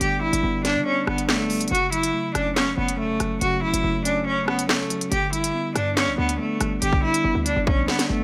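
A half-time drill groove in 4/4 drives this menacing, ominous hip hop fragment. The electronic drum kit sits up front, with a hard-clipped kick, sharp snare, crisp hi-hats, handclaps and rim clicks, all carrying a tape-warm edge, and it rolls into a drum fill from 6.8 seconds to the end. Beneath it, a short 808-style bass gives punchy, tight sine tones with a noise layer, a fast attack and a decaying tail. A single bowed cello carries the melody up front, biting and earthy with light vibrato. A mellow, clean and direct tine electric piano accompanies it over chords moving from G to F#m and back to G. Light reverb lends the whole short passage, cut from a longer piece, a modest sense of space.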